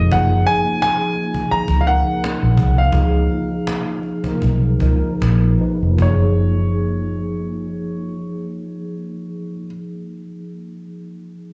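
Heard through a club PA in a small room with club reverb, this short cut from a longer neo-soul R&B piece in F# major has a relaxed, warm mood, with a 16th-note swing in 4/4 at 74-87 BPM that slows down until 6.0 seconds. A clear, intimate grand piano carries the melody up front with audible action noise and slapback echo, over a mellow tine electric piano with ensemble chorus and slapback echo that moves between F#maj9 and C#13 and lingers until 11.5 seconds. A dark, round, foam-muted vintage fingered bass sits punchy and up front, while a distant, woody cajon with faint snares and hard hands plays until 6.2 seconds.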